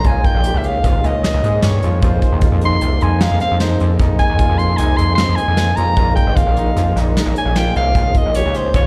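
Progressive instrumental band music in an uneven 5/4 meter with a straight feel, driving and intricate, heard as a short cut from a longer piece captured live through a venue's sound system in a reverberant recital hall. A clear, forceful soprano saxophone solos up front across the whole passage, its punchy tone carrying vibrato and a smooth top, set in plate reverb with slapback echo. Beneath it, a gritty, nasal synth bass with a distorted sawtooth bite and filter sweeps sits prominently, joined by an acoustic brush kit with a punchy kick and medium-tuned snare in a small-room sound. A lightly overdriven tonewheel organ supplies accompaniment through a slow rotary speaker with key click, while a polished grand piano plays arpeggios in the background with reverb, slapback and delay. A clear flugelhorn adds a brief second line from 1.2 to 2.5 seconds, as the harmony moves from Db6 through Fm7 and Bbm7 before returning to Db6.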